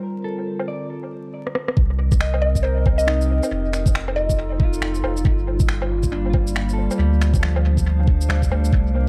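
Melancholic and rainy, this future garage excerpt moves at 138 BPM in 4/4 with a 60% swing on the sixteenths, set in C dorian. A warbling, nostalgic pad of detuned square and triangle tones opens the piece with sustained chorused chords under a filter sweep, joined almost at once by a dark, clean electric guitar whose accompaniment runs through dub echo, both parts pumping against the sidechain. Electronic woodblock, rim click, shaker and finger snaps enter at 0.6 seconds through low-pass filtering and analog delay, and a short drum fill leads into the second section at 1.8 seconds, where a knocking, up-front kick and a deep, round sine sub bass with tube saturation arrive together. From 2.4 to 4.5 seconds a woody, mallet-like FM pluck sketches a brief melody between C5 and Eb5, roughened by 12-bit sampler grit and echoed. The chords drift from Dm7 through Cm7, F7 and Gm7 back to Dm7, all wrapped in light digital ambience, an echo-heavy mix and a bed of vinyl crackle.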